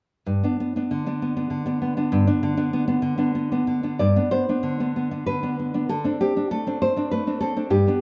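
Warm and nostalgic, this short excerpt from a longer romantic piece for solo classical guitar moves at 97 BPM in an unevenly felt, rubato 3/4 in G major, with the fingerpicked nylon-string guitar sitting up front across G2 to D5, its finger squeaks audible as it opens on a rootless G chord at 0.3 s, shifts into a new section at 4.0 s and touches a high D5 at 5.9 s, all within a moderate recital-hall reverb.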